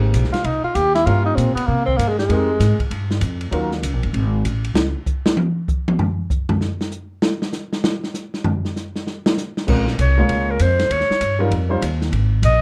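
Relaxed and swinging, this small-group jazz cut from a longer piece opens with a breathy, subtoned tenor saxophone with scooped notes, over intimate grand piano with audible action noise, growly pizzicato upright bass and a smooth, up-front drum kit with dark cymbals and a boomy kick. The drums take a solo from 4.8 s, then piano and bass return as a clarinet with soft attack, vibrato and a smooth top carries the melody from 10.0 s. The production is dark and warm, set in a moderate club reverb.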